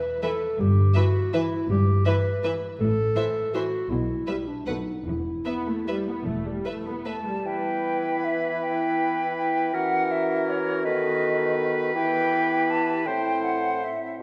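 Classical orchestral ballroom waltz in E minor, in 3/4 at 143-175 BPM with rubato and a bittersweet, sweeping mood, where a present clarinet second line runs throughout while lush bowed violin sections carry the melody and a close second line over expressive violas with portamento, focused cellos and rich double basses. An airy, up-front flute enters with a second line at 7.1 seconds, joined at 7.5 seconds by a clear oboe, a roomy bassoon and a warm French horn section sustaining chords, all set in wet concert hall reverb.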